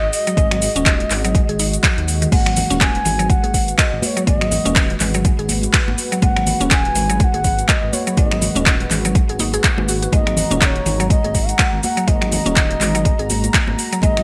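Afro house with a warm, earthy mood, this section rests on a single G#m7 chord with a swung sixteenth-note feel. A close-miked bansuri carries the melody from the start, its airy bamboo tone marked by vibrato and a soft attack, with digital delay trailing its phrases. Beneath it, a dark detuned saw bass rumbles deep and beating, pumping against the sidechain, while a moody analog pad with chorus and a slow attack sits sustained in the background. A woody, round mallet-like synth pluck enters at 0.3 seconds with bright, percussive arpeggios, treated with chorus, delay and sidechain pumping. The drums are overdriven, an electronic kick arriving at 0.4 seconds under an up-front deep house kit of metallic hats, cabasa, crash cymbal, finger snaps and handclaps, with ringing, high-tuned congas joining in the background at 2.3 seconds. Light reverb and digital ambience give the whole a bright, 1980s-style digital sheen.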